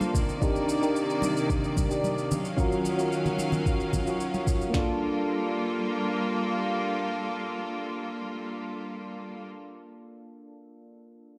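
Heard through a lush hall reverb, as if played on a big sound system in a bare stone room, this wistful sunset chillout fragment from a longer piece moves through Cm9, Ebm9 and Gm9 chords. A smooth, up-front R&B drum kit with a soft kick, sharp snare and overdriven grit joins an overdriven electronic shaker and close, dry congas struck with hard hands, and this rhythm section drops out between 4.4 and 4.9 seconds. Round, dark electric-piano-like synth keys with chorus and tape echo carry on to 11.4 seconds, while a bright, intense symphonic string section holds bowed sustained chords with light vibrato until 9.5 seconds.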